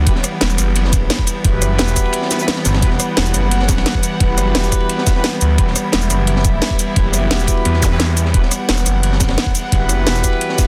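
A dense, heavily limited modern mix with light reverb carries this tense, dark technical drum and bass excerpt in E minor at 174 BPM, where a swirling, thick detuned saw bass with phaser and overdrive sits up front against a distant, reedy string section holding sustained chords that pump under sidechain, while a mellow, roomy brass ensemble adds stabs through a digital delay. The drums layer a knocking electronic kick, an up-front kit with a cracking snare, metallic hats, cabasa and rim click, and a gritty, saturated breakbeat kit with dark cymbals and a high-tuned snare tucked in the background. The kick drops out from 2.1 to 2.8 seconds, and a brief electronic zap flickers at 7.8 seconds.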